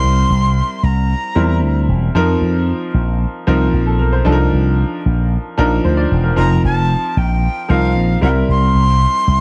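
A punchy, amped slap bass with an envelope filter sits up front in this short cut from a polished 1980s jazz-funk pop piece, driving a straight 4/4 groove with a bittersweet, nocturnal mood. Beneath it, a brilliant grand piano with a subtle chorus plays accompaniment throughout, its tone natural yet slightly worn. A breathy jazz flute carries the melody, with a crisp, chiffy attack, reedy vibrato, a slapback echo and a faintly distant quality. The flute appears only briefly at the start, then returns at 6.4 seconds and carries on to the end. The harmony moves from C7 through F7sus4 and Cm11, returns to F7sus4, and then settles back on C7, all captured in a dry, close 1970s-style studio sound with little reverb.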